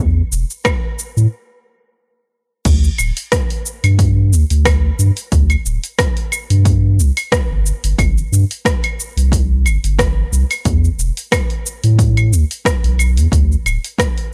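Relaxed and wistful, this sunset chillout fragment has a gentle swing in 4/4 over a deep, round sine sub bass with a fast attack and sustained notes, sitting up front from the opening second. A punchy electronic kick and a layered deep house kit of claves, crash cymbal, hi-hat, rim click and shaker share overdrive and a small room ambience, with a stop between 1.3 and 2.7 seconds before the groove carries on. The overall sound is dry and gritty, a hardware recording marked by lossy compression artefacts.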